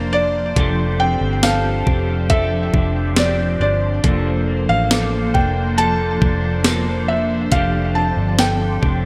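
Bright 1980s-style digital production bathed in lush hall reverb frames this blissful, floating dream pop excerpt. A soft, felt-muted upright piano carries the melody with delay over a dark clean electric guitar shimmering with harmonic tremolo and chorus, a swirling, detuned phased analog pad, slightly broken-up lo-fi arpeggios from an electric guitar through a small old amp, and a round, punchy vintage muted fingered bass, while a thumpy, sampler-style 12-bit drum machine with gated reverb enters up front at 0.6 seconds and a delicate, bell-like large celesta drifts in the background from 1.4 to 7.6 seconds.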